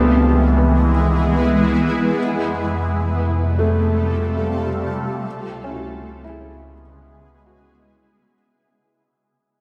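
A shimmering, ethereal pad with chorus, phaser and its own reverb sits up front in this weightless ambient fragment in free time, tuned to A4 = 437 Hz, holding sustained chords that move from C#m7 to Fadd9 at 2.2 seconds and back at 5.3 seconds, while a felt-muted upright piano plays mellow, intimate arpeggios through tape echo, a round, deep analog bass sustains beneath, and a lush hall reverb surrounds the whole fading passage.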